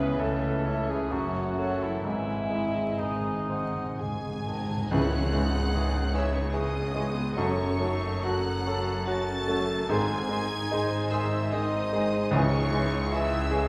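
Heard from further back in a reverberant scoring stage, with a faint vinyl crackle, this short passage from a romantic movement for piano and orchestra is passionate and tragic, moving in a rubato 3/4 at roughly 58-77 BPM in C# minor. A brilliant grand piano sits up front and carries the melody with long sustain and audible action noise, joined by a rich, distant violin section singing high above it. Beneath them, a second, intense violin section, a dark clarinet, a mellow cor anglais and a hollow silver flute weave supporting lines. Violas and a smooth bassoon fill in the accompaniment, while cellos and double basses hold the bass and a very quiet French horn section sustains chords. At 2.0 s, a dry timpani fill struck with hard mallets arrives alongside a soft cymbal swell and tam-tam, and from 4.9 s a clear trombone section adds sustained chords as the full ensemble lands an accent. 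The harmony circles through C#m, F#m and G#, and the timpani return briefly at 12.3 s as the music settles back on C#m.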